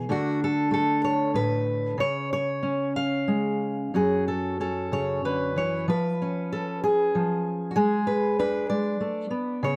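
This is a reflective, melancholic folk piece for solo fingerstyle acoustic guitar, a short fragment cut from a longer work that runs from 0.0 to 9.8 seconds. The pulse sits around 63 BPM in dotted quarters, in a 6/8 metre played with a loose, rubato feel. The fingerpicked steel-string guitar, an auditorium-style instrument, sits up front and covers a range from F#2 to E#5, with audible finger squeaks adding an intimate, human detail. The harmony moves through D5, C#, F#m and C#7/E#, then arrives at a G#dim as the fragment closes. A moderate spring reverb gives the guitar a gentle halo, and the dark, warm production suits the wistful mood.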